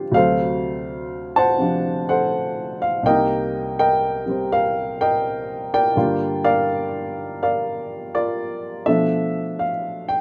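Solo jazz in a smoky, cool mood, this brief excerpt from a longer piece features a dark, woody upright piano sitting up front with a mellow, vintage character, swinging through 4/4 at 82 BPM over rich altered and minor-seventh chords, wrapped in light reverb.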